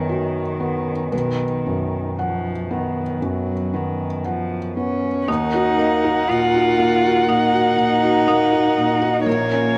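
A moderate spring reverb with a 2.6-second tail surrounds this reflective, longing neoclassical piece for piano and strings in Eb minor at a rubato 59 BPM, where an intimate, mellow felt-muted upright piano with audible action noise and a veiled con sordino cello carrying a second line through tape echo open together, joined at 5.3 seconds by a dark muted violin melody with vibrato and portamento, a muted viola in the background, and very quiet, woody marimba arpeggios from bright padauk bars.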